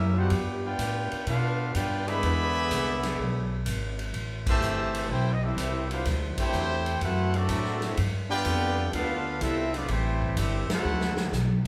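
Big band swing jazz in G major at 125 BPM, energetic and brassy, with a clear, close-miked trumpet section carrying the melody over a warm trombone section on the second line while a woody, growly pizzicato upright bass sits up front and a punchy big-band drum kit swings on crash, ride, hi-hat, snare and kick. A second trombone section with a smooth top holds sustained chords in the background from 0.2 to 2.4 seconds and again from 5.9 seconds, as the harmony moves from G9 through E7, Am7 and D9. The band, playing live in one room with moderate studio reverb, hits accents at 4.4 and 10.6 seconds before a drum fill at 10.8 seconds closes this cut from a longer piece.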